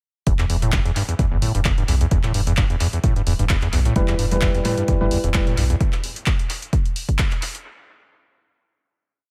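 From 0.3 s, a driving, gritty acid house groove in E minor at 130 BPM sets off with a punchy four-on-the-floor electronic kick, a tape-warm analog drum machine's handclaps and hi-hats trailed by analog delay, a deep, round analog bass riff, and a squelchy, saturated acid line whose 7-step loop drifts against the bar through sidechain pumping and dub echo, while a dark, grainy concert grand piano adds dotted-rhythm chord stabs between 4.0 and 5.5 s in an echo-heavy mix with little reverb.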